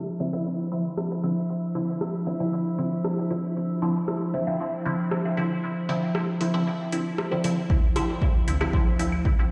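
A warbling, lo-fi pad opens this hypnotic, nocturnal dub techno excerpt in D minor at 116 BPM, holding a Dm9 chord with a slow attack, chorus and a sidechain pump while a filter sweep runs through the first 7.7 seconds. Almost at once a glassy texture of drifting overtones settles in the background, and muted, detuned chord stabs with a filter pluck, phaser and dub echo sit up front beside a deep house kit whose overdriven, metallic hi-hats and rim clicks fill out the groove. At 7.7 seconds the glass texture drops out as a punchy electronic kick and a round, soft sub bass on D arrive, the bass colored by tube saturation and a sidechain pump. Faint analog claves with dub echo flicker in briefly near the close. The whole mix sits in a lush hall reverb and the stone echo of a bare room heard through a big sound system, softened by a low-pass filter.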